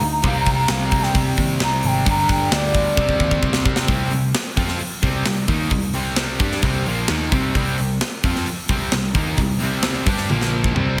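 A breathy, mellow bass bansuri opens this menacing, driving hard rock passage in C minor, its tongued straight tone and rolled-off highs carrying a short solo melody with slapback echo for the first 3.4 seconds. Beneath it, three electric guitars play a riff throughout: a bright, compressed distorted guitar with its own slapback echo, a dark overdriven guitar, and a sludgy double-tracked guitar, the last two sitting in the background. A growly, foam-muted picked electric bass adds an amped low end, while a tight metal drum kit sits up front with a tight kick and a medium-tuned snare. The drums play fills at 3.0 seconds and again at 10.3 seconds. At a straight 131 BPM in 4/4, the harmony moves through C5, G5, Cm and Bb5. A moderate scoring-stage reverb lends the mix a big-arena sound, and the kit itself sounds airy and polished in this cut from a longer piece.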